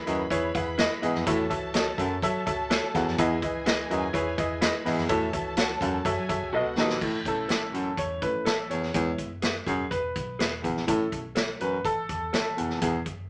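A lush, dark string section and a woody, slightly detuned upright piano open this joyful, danceable slice of uptempo 1960s-style soul at 125 BPM, with the strings sitting distant in the background until 7.0 seconds. Up front, a baritone saxophone carries a low riff with subtone breath, light vibrato and scooped notes, while a round, foam-muted electric bass and a vintage drum kit with a punchy kick, medium-tuned snare and dark cymbals drive the straight 4/4 groove. An electric guitar through a small old amp adds slightly broken-up, compressed stabs bathed in spring reverb from the background. The opening section moves through Emaj7, A6 and F#m7 before a drum fill on B7 leads into a second section at 7.0 seconds, where the piano takes a solo over A and E. The moderate studio ambience gives the whole band a vintage room feel, and the recording is cut from a longer piece.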